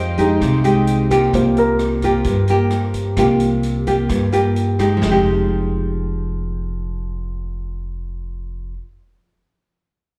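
Heard as a live club set through the venue's PA, with light reverb and small-room ambience, this short, intimate and wistful bossa nova cut moves at 130 BPM in F minor, shifting from C7sus4 to Fm9 at 5.0 seconds. A deep-bassed concert grand piano with short sustain takes a solo over up-front fingerpicked nylon-string guitar, full-bodied and classical with slapback echo like the piano, and woody, thumpy pizzicato upright bass on gut strings. A soft, floating bowed string section glows distantly in the background until 1.3 seconds, and a natural big-room drum kit with punchy kick, medium-tuned snare, rim clicks, hi-hat and toms plays until 5.1 seconds.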